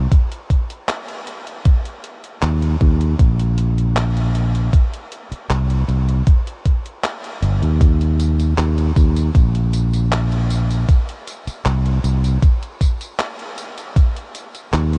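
A thumpy, tape-warm electronic kick drum sits up front in this nostalgic, woozy vaporwave piece, cut from a longer work at a relaxed 78 BPM in straight 4/4. The kick enters at 0.1 seconds and stops at 14.1 seconds, carrying the vintage 12-bit sampler grit that gives it a dusty, sampler-style edge. Beneath it, a detuned 8-bit digital drum machine adds handclaps, hi-hat and tambourine, set well back in the mix with the same gritty, tape-softened sampler character. A fingered electric bass, direct and up front, holds the low end from the very start, moving between G1 and Eb2 in Eb major. The piece is tuned slightly flat to A4 = 438 Hz, and a light reverb gives the single section a hazy sense of space.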